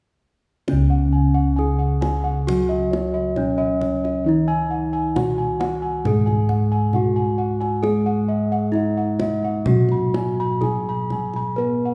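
In a straight 4/4 at 67 BPM, this shimmering, serene Javanese gamelan excerpt in C# slendro sets a ringing bronze metallophone struck with a wooden mallet on the melody over a mellow, close-miked second metallophone played with padded disc mallets, round, airy bossed gongs in the bass, tight kendang under hard hands, and bright, beating bossed-gong arpeggios entering at 0.9 seconds, all heard in a reverberant recital hall.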